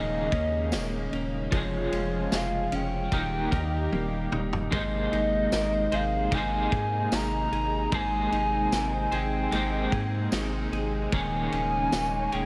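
Bathed in a huge ambient reverb, this dreamy, ethereal dream pop piece in Ab major drifts at 75 BPM, with a warbling, nostalgic wave-folded synth lead carrying the melody over a twangy, slightly broken-up electric guitar with tremolo, a smooth detuned sawtooth pad, and a clean, compressed direct-recorded guitar playing arpeggios through ensemble chorus and delay, while a thick, saturated sine sub bass and a dark-cymbaled vintage kit, entering at 0.3 s, underpin them, the drums rolling through a fill from 3.9 s to 4.7 s as the harmony settles onto Abadd9.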